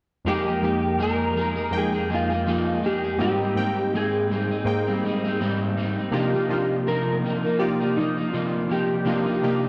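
Indie bedroom pop with a wistful, lonely mood, this short excerpt with a light swing sets an electric slide guitar melody over round, detuned analog keys with a filter sweep and chorus, and a dark, slightly broken-up picked electric guitar with warbly pitch drift, moving through Fm11, Abmaj7 and Cm11 in a dark, spring-reverbed production.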